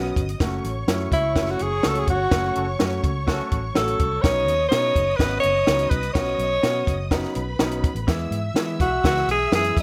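Uptempo 1960s-style soul with an uplifting, joyful mood, heard in a short cut from a longer piece. A compact cocktail drum kit, dry and up front with a high-tuned snare and punchy kick, drives the straight 4/4 groove from 0.2 seconds, under a dark, foam-muted fingered electric bass that sounds round and amped. A concert grand piano fills in the accompaniment with deep bass and audible action noise, while a lush, distant violin section adds a bowed second line with expressive vibrato. A breathy tenor saxophone takes the melody from 1.1 seconds, whispered and intimate with a soft attack and scooped notes. A horn section with light vibrato and a smooth top adds a brief second line between 2.6 and 3.6 seconds, during a band accent, as the harmony moves from F#m through Badd9 to E, all set in a moderate studio reverb.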